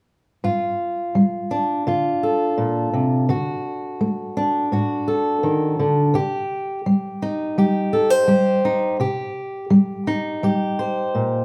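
A straight 4/4 pulse at 84 BPM carries this short folk passage, cut from a longer piece, with a stirring, yearning mood. A fingerpicked steel-string acoustic guitar supplies the accompaniment from 0.4 to 11.4 seconds, ranging from G2 up to C5. Its tone is dark with an auditorium-like body, and it sits up front in the mix. The harmony moves from Gm7 to D and then settles on Cm, tuned slightly below standard pitch at A4 = 439 Hz. The playing was captured live in one room and framed by a moderate, large studio reverb that lends the guitar a spacious tail.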